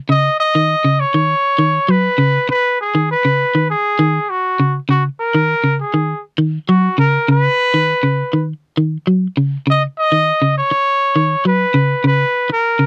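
A solo trumpet sits up front with a warm, vintage tone, singing the melody between F#4 and D#5 with light vibrato and scooped notes in a pop-styled manner. Beneath it, a bright, twangy electric guitar, picked and slightly broken-up, plays arpeggios in a low register from C#3 to F#3, also placed up front. This short afrobeat excerpt moves at a driving 100 BPM in a straight 4/4, carrying a defiant mood in G# minor. Both parts play together from 0.1 to 12.9 seconds over a rootless G# minor chord. The sound is that of a dry, close 1970s-style studio recording with light reverb, cut from a longer piece.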